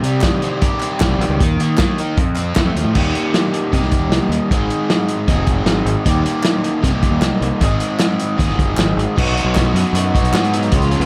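Indie rock at 154 BPM, restless and bittersweet, with a crunchy, double-tracked overdriven guitar riff up front over a growling, bright overdriven fingered bass and a muffled, lo-fi vintage drum kit with a punchy kick, while crisp group handclaps sit in the background from 0.2 to 2.6 seconds and again from 6.4 to 10.4 seconds, all in a small room, as chords move from Cm through Eb and Abmaj7 to a closing B in this short cut from a longer piece.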